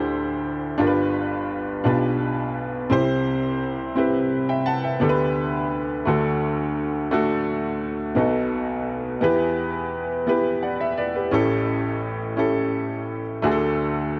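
A clear upright piano carries this short gospel passage entirely on its own, its woody, slightly detuned tone sitting up front in the mix. The mood is uplifting and jubilant, moving in an unhurried 6/8 with a straight feel. The piano ranges from deep bass notes to bright upper tones, and a slapback echo gives its worn voice a gentle doubling. The harmony opens on a suspended D9 chord, settles through G and C, then turns through B7, E minor and A7 before arriving on D at 13.4 seconds, leaving the phrase open as the clip ends at 14.2 seconds. The sound is dry and close, with a small room ambience that recalls a 1970s-style studio, and the passage is cut from a longer piece.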